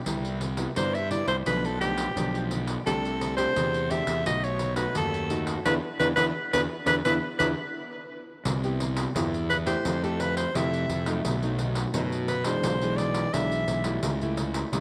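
Samba and choro at 86 BPM in a lively, nostalgic mood, this passage cut from a longer piece pairs a fingerpicked classical nylon-string guitar and a growly, punchy fuzz bass with overdrive with a jingly, band-limited vintage pandeiro played with soft hands, while from 0.8 s an up-front soprano saxophone solos in a warm jazz style with vibrato, subtone and tape echo, the band hits an accent from 5.7 to 8.5 s, and a moderate plate reverb adds space.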